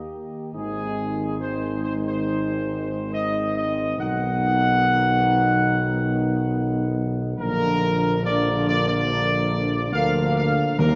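A slow, straight 4/4 pulse at 70 BPM carries this majestic, triumphant classical brass excerpt, where a dark, softly attacked trumpet section sings the melody up front over sustained chords from a gently vibrato-tinged French horn section and a mellow trombone section set in the background. A close-miked tuba anchors the bass as the harmony moves from Eb through Ab and B to Bb, and a timpani struck with hard mallets on calf heads lands crisply at 10.8 seconds. The whole passage is bathed in a long, cathedral-like reverb that gives it a dark, warm, spacious sound.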